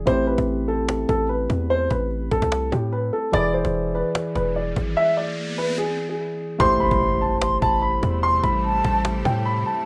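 Hip hop trap at 147 BPM in a half-time feel and A minor, hard-hitting and brooding, where a dark, boxy grand piano carries the melody up front over a barky electric piano through a combo amp, a punchy sine 808 bass, and woody, dry cajon with 12-bit sampler grit, while an electronic riser builds from 4.4 seconds to an impact at 6.6 seconds, an airy, distant flute with vibrato and delay enters at 6.8 seconds, and a cloudy, detuned granular pad drifts in at 7.8 seconds in this rough home-demo fragment.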